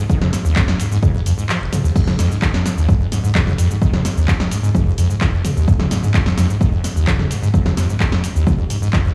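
Heard through a big sound system in a bare room, this gritty, hypnotic acid house excerpt is built around a squelchy, resonant sawtooth bass riff that sits up front, its fast-attack filter plucks decaying under lush chorus and digital delay. A punchy, tape-warm electronic kick and an analog drum machine, both re-recorded in a large room, drive a straight groove with snare, handclaps, hi-hat, cabasa, toms and crash cymbal. The kick drops out briefly from 1.5 to 2.0 seconds while the bass riff and drum machine carry on.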